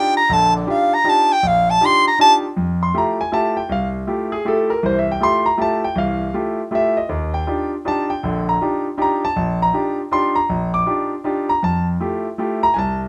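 A small, wet room gives this short cut from a longer jazz waltz an intimate, hypnotic and searching air, swinging in 3/4 at 159 BPM in F mixolydian. A breathy soprano saxophone opens up front with a whispered, scooped solo line and light vibrato, stopping at 2.3 seconds. The clear, vintage concert grand piano carries on alone with deep bass and smooth tone through 13.1 seconds, moving between Ebmaj9 and Fmaj9.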